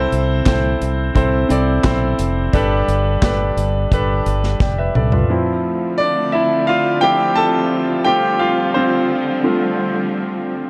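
This piano-driven pop cut moves at 87 BPM in a straight 4/4, with an uplifting, anthemic mood and a dark production cushioned by plate reverb and a small room ambience. A clear concert grand piano carries the accompaniment from start to finish, sitting up front with deep bass and long sustain. For the opening 5.3 seconds, a round, punchy fretless electric bass and an acoustic drum kit with a tight kick, medium-tuned snare, hi-hat, toms and handclaps drive the groove over Am/C and Gadd9, the kit ending on a fill from 4.6 seconds. At 5.3 seconds the bass and drums drop away, and the piano takes a solo over Dm7 and G7sus4. Beneath it, a rich bowed string section holds sustained chords with light vibrato and a smooth, even ensemble tone until the cut ends.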